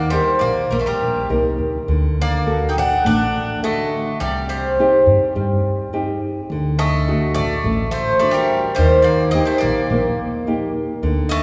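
In a straight 4/4 that starts at 105 BPM and gradually speeds up, this bittersweet, cool Greek folk excerpt has two picked bouzoukis with bright, metallic double strings, one carrying the melody high and the other a lower second line, over a close, fingerpicked nylon-string guitar whose fresh strings squeak, and a pizzicato upright bass with a woody, growly tone, all bathed in a long church reverb as the chords move from Eb through D and Cm and back to Eb.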